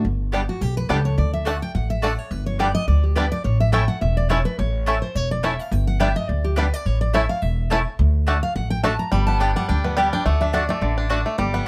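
A picked jumbo steel-string acoustic guitar with old strings takes a full-bodied solo from the start, joined at once by a thumpy, dark upright bass on gut strings, in a virtuosic, rustic bluegrass excerpt in D major at 212 BPM with a swung feel. At 0.3 seconds a twangy, fingerpicked banjo carries the melody up front while a bright mandolin with double strings adds stabs over chords moving among G, D and A. Close, detailed microphones and light reverb give the acoustic ensemble an intimate presence as the passage repeats its opening section from 9.1 seconds.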